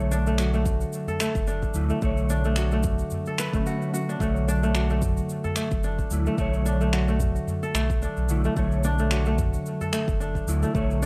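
A swung 4/4 groove of overdriven electronic shaker and finger snaps opens this meditative, earthy piece of organic downtempo alongside the bass, kora and guitar, joined at 0.7 seconds by a deep electronic kick and a small udu in the background that drops out at 9.9 seconds. Over a round sine sub bass with sidechain pumping, a crisp, ringing kora plays fingerpicked arpeggios up front through delay, while a dark, clean electric guitar adds accompaniment with ensemble chorus, pumping and delay. A moderate echo chamber reverb gives the dark, warm production its space, all resting on a single Bm7 chord.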